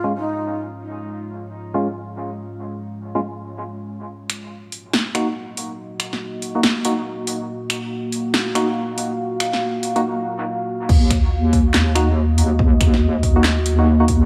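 A breathy ney note with dub echo opens this heavy, brooding deep dubstep excerpt in Eb minor at 141 BPM with a swung half-time feel, over a dark, detuned ambient pad under a filter sweep and hollow, chorused organ stabs. A deep house kit of punchy snare, metallic hats, handclaps, finger snaps and crash enters at 4.3 seconds, overdriven and low-pass filtered, as the stabs are swept through a build-up and a short break. At 10.9 seconds the drop lands with an overdriven electronic kick and a saturated, mellow square-and-sine wobble bass, all set in a lush hall reverb.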